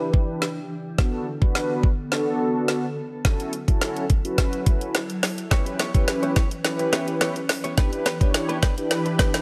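A dry, close-sounding cut from a longer dance-pop track in B minor at 106 BPM, bittersweet yet confident, built as a straight 4/4 build-up with a drum fill and filter sweep running through its 9.4 seconds. A smooth R&B drum kit sits up front with a knocking kick, woody snare and warm hi-hats, while mellow, round synth brass with detuned sawtooth tone, chorus and vibrato carries the accompaniment, and a glassy, ethereal FM pad holds slow-blooming chords; both synths pump against the beat through a low-pass filter. The chords move from Em7 through Bm7 and F#m7, and at 5.5 seconds, as they reach C#m7b5 before returning to Em7, a bright, clean, direct-recorded electric guitar adds a picked riff.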